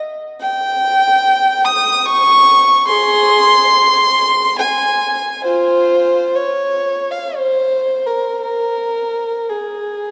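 A lone violin, dark and woody in tone, plays with vibrato and sul tasto bowing, entering at 0.4 s and ranging from F4 to Eb6 in this nostalgic, serene fragment of a longer classical piece. Set in Ab major and 3/4 with a free, expressive rubato drifting between 48 and 74 BPM, the single player sounds close and up front, tuned to A4 = 439 Hz. A wet church reverb with a 3.0-second decay surrounds the bowed line.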